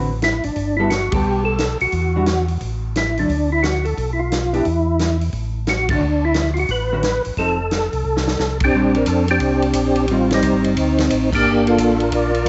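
A fast swung 4/4 pulse drives this bluesy, greasy soul jazz organ trio fragment, cut from a longer piece. A mellow, round tonewheel organ holds down the bass line with audible key click and a slow rotary speaker, while a second tonewheel organ, percussive with third harmonic percussion, chorus vibrato and slapback echo, carries the melody up front from 0.2 seconds. A hollow-body jazz guitar adds dark, clean, fingered accompaniment until 10.3 seconds, and a vintage acoustic drum kit with a tight kick, medium-tuned snare, hi-hat, ride and crash cymbals sits back in the mix with a rolled-off top. The band hits accents together at several points, and a short drum fill at 8.1 seconds leads into a shift to a new key centre at 8.7 seconds, where the harmony moves through lush extended and altered chords. The sound has a vintage, dusky character, with moderate echo chamber reverb, a small room ambience and a dulled high end.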